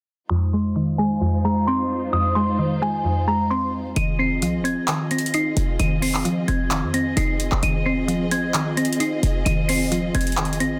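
A dense, heavily limited modern master with digital ambience carries this eerie, menacing trap excerpt in F minor at 131 BPM, moving in a half-time feel over an Fm7 chord, with a filter sweep across the opening 4 seconds. A tinkling, warbling FM tine bell plays the high melody with chorus, phaser and delay, while a woody, round synth pluck sits up front as accompaniment and a lush bowed string section holds soft, vibrato-tinged chords beneath. At 4.0 seconds a punchy, tight 808-style bass with a noise layer arrives alongside a booming analog drum machine with handclaps and metallic hi-hats.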